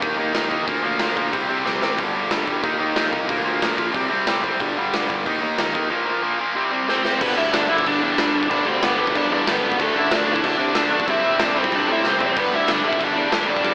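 A biting, overdriven lead guitar stands out up front once it enters at 6.9 seconds, its picked melody bright and coated in slapback and tape echo, riding over a sludgy, double-tracked rhythm guitar riff that churns through power chords from the start. This is energetic, rowdy punk rock at 185 BPM in a straight 4/4, with a growly picked bass sitting in the background and a big acoustic drum kit of punchy kick, bright cymbals and a medium-tuned snare, marked by fills around 1.7 and 12.0 seconds. The sound is drenched in lush hall reverb that suggests an arena yet carries an AM-radio rasp, and this cut from a longer piece moves from its opening section into a second part at 7.2 seconds.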